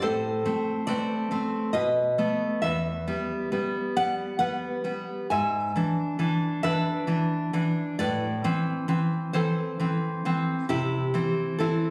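A romantic piece for solo classical guitar unfolds in a melancholic, wistful mood, moving at a slow 67 BPM in 3/4 with a rubato feel. It sits in E minor before turning toward A minor from 5.3 seconds, passing through chords such as Am, B7, Em and E7/G# before settling on Am and Am/C. The nylon-string guitar is the only voice, fingerpicked across a range from E2 to G#5 and placed up front, with a full-bodied, deep tone and finger squeak on the strings. A moderate recital hall reverb surrounds the playing, giving the phone-captured sound a sense of the room. This short passage is cut from a longer piece and lasts about 11.9 seconds.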